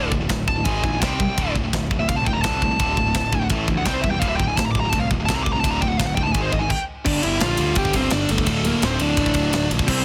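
A dark, distorted high-gain lead guitar solo carries the melody through the opening of this heavy metal excerpt at 169 BPM in 4/4, breaking off at 6.7 s. Beneath it, two high-gain rhythm guitars play riffs in the background, and one of them gives way to a double-tracked, thick fuzz guitar on the riff from 7.0 s. A growly, overdriven fuzz bass and an up-front acoustic drum kit, with a tight kick, bright cymbals and a softly clipped snare, drive the heavy mood. At 7.1 s a second high-gain lead line with delay joins, and the whole piece sits in a small room under a dense, heavily limited modern master.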